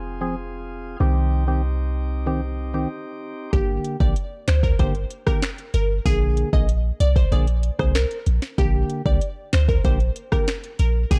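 Bouncy and hypnotic, this dancehall excerpt in G phrygian moves at 95 BPM in a straight 4/4. It opens with light, bright chamber-organ flute chords, filtered and pumping, alongside a boomy sine-based 808-style bass and hollow, percussive organ stabs that add chorus to the same pumping filter. After a brief break at 2.9 seconds, a crystalline, detuned wavetable pluck carries the melody through chorus and tape echo from 3.5 seconds, while an up-front electronic afro-pop kit of deep kick, sharp snare, crisp hats, finger snaps and rim clicks drives the dark, digitally ambient mix.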